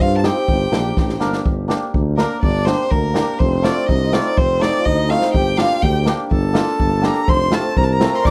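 Festive yet bittersweet, this short klezmer passage in 2/4 moves with a straight pulse, cut from a longer piece. A clear, focused violin carries the melody up front with vibrato, taking a solo from 1.4 seconds after a drum fill closes the brief opening. Beneath it, a reedy accordion with tape echo sits in the background as a second line, while a hammered dulcimer adds shimmering, ringing accompaniment. A mellow, punchy tuba anchors the bass with light vibrato, and an open jazz drum kit with a boomy kick and medium-tuned snare drives the rhythm, adding another fill at 5.1 seconds. The harmony alternates between G minor and F, and the dry, close sound recalls a 1970s-style studio recording.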